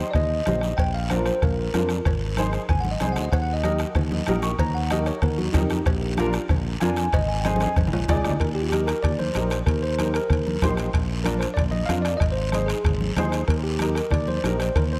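Sunny and danceable, this cumbia excerpt moves at 189 BPM in Eb major, with a bell-like tine electric piano carrying the melody through subtle chorus and a diffuse ambient delay, soloing until a drum fill at 7.5 seconds leads into a new section at 8.4 seconds. A woody upright piano with short sustain and ensemble chorus supplies the accompaniment, while a punchy fingered electric bass sits up front, joined by a close, soft-beaten bombo. In the background, ringing congas and metal-shelled cowbell and timbales keep the groove, with a raspy guiro heard close and dry, all set in a lush hall reverb that gives the mix a dreamy glow.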